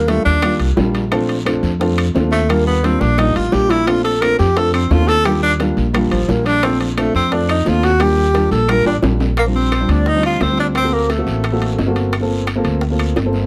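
A breathy, subtoned tenor saxophone solo with vibrato opens this sophisticated, danceable Afro-Cuban jazz excerpt up front over woody pizzicato upright bass, a dark, mellow baby grand piano with audible action noise, tight high-tuned bongos, ringing metal-shell timbales, a raspy guiro and quiet saturated claves, with drum fills at 3.0 and 8.9 seconds before a bright, soft-attacked jazz flute joins as a background second line at 9.4 seconds as the harmony moves from alternating Ebmaj7 and Bbmaj7 toward D7b13 and Gm11.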